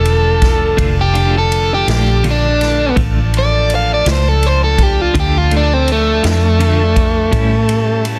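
A soulful, smoky slow blues in 12/8 opens with an up-front, picked overdriven electric guitar solo in plate reverb over Dm, backed by a dark, round, foam-muted electric bass, a smooth tonewheel organ with chorus vibrato and slow rotary speaker, and a tight, close-miked horn section in octave doubling with light vibrato. A distant, roomy big-band drum kit with dark cymbals, a medium-tuned snare and a boomy kick enters at 0.1 seconds, and a clean, compressed electric guitar adds background accompaniment with tremolo and plate reverb from 0.8 seconds. Cut from a longer piece, the passage shifts to A7 at 7.3 seconds under a dense, heavily limited modern master.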